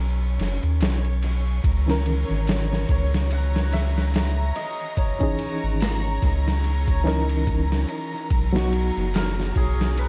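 A slow 72 BPM trip hop groove with a swung sixteenth-note feel arrives at 0.4 s on a muffled, pitched-down sampler drum kit with a thumpy kick, 12-bit grit and tape echo, all riding over a deep, round dub sub bass that sits up front. In C# dorian, a mellow, shimmering cimbalom melody with tape echo floats alongside lush bowed strings carrying sustained Bmaj7 and C#m69 chords through a coat of vintage sampler grit, while a reversed, granular texture with built-in reverb hovers dreamily in the background. At 1.9 s a barky, reedy electric piano enters with overdrive, fast tremolo and echo, completing a dark, cinematic, echo-heavy mix dusted with vinyl crackle.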